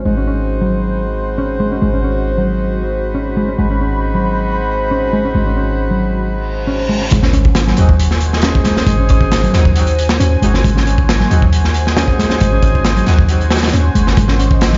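Heard through a big sound system in a bare stone room, with a dull, capped top end, this gritty, raw breakbeat excerpt opens on a swirling, detuned sawtooth pad that pumps under a filter sweep, beside a deep, boomy 808-style bass up front. A dark, foam-muted picked electric bass riff with tube saturation and mellow horn stabs with light vibrato and octave doubling both carry digital delay. A reverse cymbal and sub drop sit in the background from 6.5 seconds, and at 7.1 seconds the drop lands with an impact as a crunchy, saturated breakbeat kit with a tight kick and medium-tuned snare takes the front.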